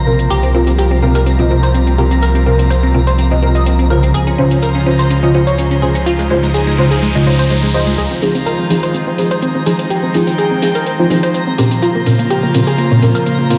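Emotional and expansive, this progressive house passage, cut from a longer piece, sets an airy, breathy pad with vintage sampler grit and deep, mellow chord stabs under filter sweeps alongside a glassy wavetable pluck arpeggio with tape echo, a twinkling granular shimmer and metallic electronic hi-hats, while a round analog bass anchors the low end until 8.0 seconds, where a riser entering at 5.9 seconds gives way to a build-up, the whole mix heard in a large studio reverb.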